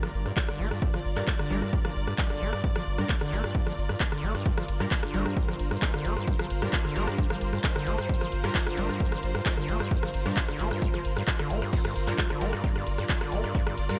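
Driving peak-time techno at 132 BPM in G minor, this dark, industrial excerpt stays on a G minor chord throughout as a squelchy, gritty acid bass riff with distortion, chorus, cassette tape colour and delay pumps alongside a deep, saturated sub bass, while detuned sawtooth rave stabs sit in the background with built-in reverb, a distant, woody bowed string section adds a lush, pumping texture, an up-front techno kit with smooth hats, claps, rim clicks, ride and crash plays across all 14 seconds, and a punchy layered electronic kick runs from 0.4 to 13.6 seconds, all in a light reverb.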